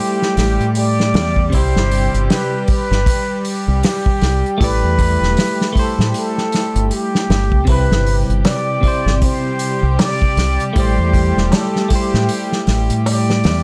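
Trip hop at 78 BPM in A minor, hypnotic and melancholic, with swung 16ths under a breathy, distant plunger-muted trumpet melody with tape echo, a bright, twangy clean electric guitar with tremolo, reedy gut-string chamber strings holding sustained chords, a punchy, up-front acoustic drum kit played with bundle sticks, a dark, round dub bass, and a very quiet clay darbuka entering at 8.4 seconds, set in a dry mix.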